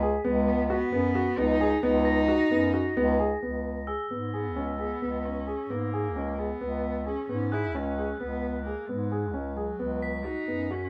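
Hypnotic and urgent, this contemporary chamber piece moves in an uneven 7/8 meter at 264 BPM counted in eighths, centred on C# dorian. A polished baby grand piano, present and up front, spins arpeggios in a narrow middle range from the opening, while a roomy, distant-sounding bass clarinet holds the low bass line in classical style. From 0.3 seconds a single bowed cello carries the melody with a dark, woody tone, light vibrato and a soft attack. Crotales struck with plastic mallets add a high, shimmering, bell-like ring from 2.1 to 4.5 seconds and again from 7.5 seconds, sitting softly behind the other parts. The harmony rests on B over C# before shifting to an open C#7 at 3.4 seconds, when the second section begins, and returns to B over C# at 9.8 seconds. Light reverb surrounds this short passage, which is cut from a longer work.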